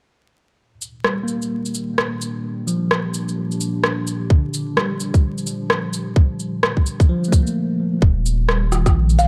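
This wistful, ghostly future garage fragment opens on a warbling, lo-fi pad that fades in with sustained Ebmaj7 chords, its detuned, wave-folded tone softened by chorus, built-in reverb and vintage sampler grit while sidechain pumping makes it breathe. An up-front electronic shaker and rim click arrive almost at once with a swung, tape-warm feel, and a bell-like tine electric piano follows at 1.0 seconds, its clean accompaniment passing through a filter sweep, low-pass filter and analog delay while sidechain pumping moves it too. A tight electronic kick drum joins at 4.3 seconds as the harmony moves to Gm7, and after a brief stop the music shifts to Eb at 8.0 seconds. There a round, sine-like sub bass pumps in underneath, and a woody, buzzing marimba touches a single note just before the cut. Light reverb and vinyl crackle frame the dark, warm production.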